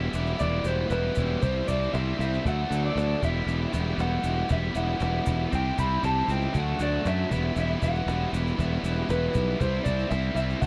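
Indie rock at 118 BPM in 4/4, upbeat yet wistful, this short cut from a longer piece cycles through Em, C, D and Emadd9 over a straight feel. A dark, lo-fi lead guitar through a small old amp carries the melody up high, while a biting overdriven guitar and a distorted guitar with analog chorus pick out riffs beneath it, all over a growly, punchy fuzz bass that sits up front. A woody cajon with faint snares enters at 0.4 s and a grainy tube shaker at 0.1 s, both in the background, and the whole is captured as a dry, close 1970s-style studio recording in a small room.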